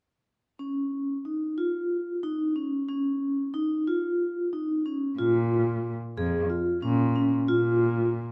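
A straight 7/8 pulse at 183 BPM in eighths carries this hypnotic, pensive contemporary instrumental, cut from a longer piece and tuned to A4 = 439 Hz. A vibraphone with medium hard mallets opens at 0.6 s with ringing, metallic arpeggios over Dbadd9, its motor vibrato giving a dark, smooth shimmer. At 5.2 s the harmony turns to Bbm as a single muted cello enters beneath with a veiled, boxy bowed bass line, soft attacks, vibrato and portamento, both parts close and detailed in a moderate recital hall reverb.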